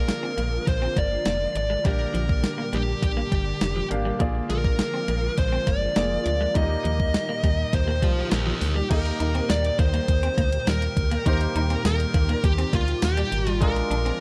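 A moody, dramatic slice of 1980s-style pop in a straight 4/4, cut from a longer piece and moving through Gm, Bb7 and Eb harmony. Up front, a dark, high-gain lead guitar carries the melody, its distorted picked tone trailed by delay and a shimmering reverb. A clear concert grand piano supplies polished accompaniment with deep bass and short sustain, while a bright, swirling string machine holds sustained chords in the background, colored by ensemble chorus and phaser. A clean, compressed electric guitar picks a riff from 0.1 seconds, also set back and bathed in chorus and shimmer reverb. Underneath, a punchy, round FM bass with a fast attack drives the low end, and a 12-bit drum machine with a thumpy kick, medium-tuned snare, hi-hat, tambourine and crash gives a sampler-style, tape-tinged pulse, all within a dark production of light reverb and digital ambience.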